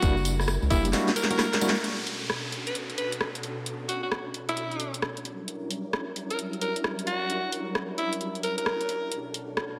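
A skippy two-step garage groove with a swung 16th-note feel opens this bouncy, dreamy excerpt, as a tight electronic kick, rubbery square bass, barky overdriven tine electric piano stabs with fast tremolo, and a jingly tambourine drive the first moments, with a drum fill from 0.9 seconds and a band accent at 1.7 seconds. The garage kit's cracking snare and rim click keep going up front while a raspy, forceful alto saxophone carries the melody with tape echo and light vibrato over silky string-machine chords that pump beneath it. A downlifter sweeps through from 1.8 to 5.5 seconds, and the whole mix is soaked in a lush hall reverb.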